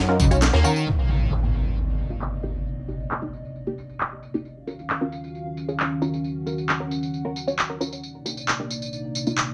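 A straight breakbeat groove opens this raw, funky fragment: a gritty, pitched-up sampler-style kit of thumpy kick, high-tuned snare and hi-hat sounds only briefly at the start, while dry electronic tambourine and handclaps carry on under a drum filter sweep from 0.9 seconds. A swirling, thick phased saw bass and a dark, overdriven, double-tracked guitar riff flash by in the opening second, leaving muted dub chord stabs with phaser and delay over a moody, pumping analog pad that moves between Ebm9 and Cm9. An up-front electronic impact hits at 0.9 seconds, and a small room adds modest reverb.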